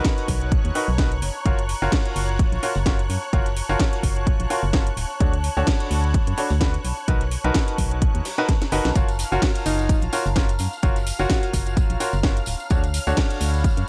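Piano house at 128 BPM in F# major, feel-good and joyful and cut from a longer piece, rides a brilliant baby grand piano riff with audible action noise and delay over a punchy, up-front electronic kick, a house drum kit with cracking snare and metallic hats, a muffled, lo-fi vintage kit, and a hollow, dark organ-like FM bass. A silky sawtooth string pad sustains chords, and a warbling, nostalgic tape-like pad sits in the background, with the piano, bass and both pads pumping to the sidechain. A tambourine joins at 9.0 s after a drum fill, and a breathy alto saxophone plays a brief jazz-style solo from 9.3 to 11.5 s.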